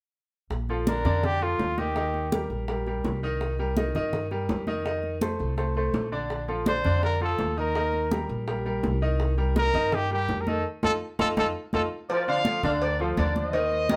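A scooped, lightly vibrato-laced solo trumpet leads this joyful, danceable salsa excerpt at 166 BPM in Bb major, riding up front over a brilliant, worn concert grand piano, a woody, growly pizzicato upright bass, damped, soft-handed congas and tight, vintage-toned bongos and cowbell tucked in the background, until a band accent at 10.7 seconds and a drum fill hand off at 12.1 seconds to a punchy, dark trumpet section and a mellow, roomy trombone section, all within the wet reverb of a band playing live in one room.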